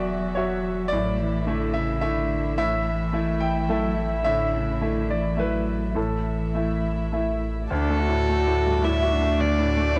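Hopeful and intimate, this neoclassical piece for piano and strings, cut from a longer work, moves in a rubato 3/4 at 107 BPM in D major. A bright, brilliant concert grand plays the accompaniment over Esus2 and Asus4 harmony, while a dark cello with vibrato sings a close second line, a chamber string section holds soft sul tasto chords, and a clean sine sub bass sits deep and up front beneath them. At 7.7 s the harmony settles on D as a rich, floating solo violin enters with the melody, and the piano and all the bowed strings carry a cassette tape colour in a lightly reverberant home recording.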